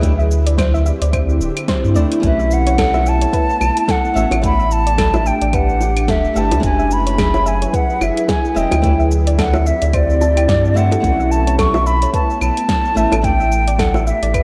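A hollow, vibrato-laden concert flute carries the melody from 2.3 seconds in this relaxed sunset chillout excerpt at 109 BPM in B minor, over fingerpicked flamenco guitar with audible finger squeak, an ethereal detuned pad with ensemble chorus, a round sine sub bass sitting up front, a dark filtered pluck playing arpeggios through chorus and ambient delay, an overdriven deep house kit with punchy snare, cabasa, claves and hi-hat, a deep overdriven electronic kick, and very quiet low-tuned bongos from 2.9 seconds, all in a dreamy, reverb-soaked mix.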